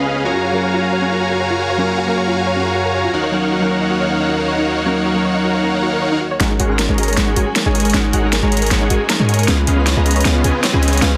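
Dreamy and emotional, this future bass passage, cut from a longer piece, moves at 156 BPM in a half-time feel. Glassy digital keys with chorus, phaser and dub echo, lush bowed strings under a low-pass filter, a huge detuned supersaw riff up front, and a soft, round pluck arpeggio in the background all sound from the start, with filter sweeps on the strings and pluck through Gbmaj7 and Ebm7. At 6.4 seconds a deep, boomy 808 bass and an overdriven pop kit with a fat snare arrive for a build-up with a drum fill and a sweep on the supersaw, as a very quiet riser enters at 9.2 seconds over Ab9sus4 and Db7 in a dense, heavily limited mix with moderate digital room reverb.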